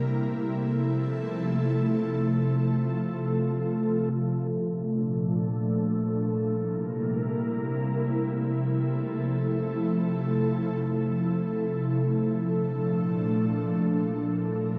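Floating and blissful, this hip hop fragment rests entirely on a solo ethereal pad whose detuned sawtooth and triangle voices, mellow and up front, are blurred by ensemble chorus, analog delay and a low-pass filter in an echo-heavy mix with light reverb, drifting through Fmaj7, Bbmaj7 and C7 chords with a filter sweep between 4.1 and 12.1 seconds.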